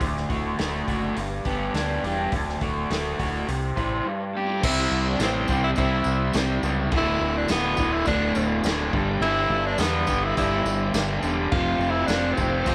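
A raspy, gritty tenor saxophone with scooped notes and light vibrato takes the solo melody from 4.6 seconds in this sunny, swaggering classic rock excerpt at 104 BPM, riding over two overdriven guitar riffs, one crunchy and in the background, the other lo-fi and up front, plus a growling fingered bass, a vintage drum kit with a punchy kick and rolled-off top, a very quiet piping tonewheel organ with slow rotary and key click entering at 4.3 seconds, and a distant jingly tambourine, all bathed in moderate plate reverb.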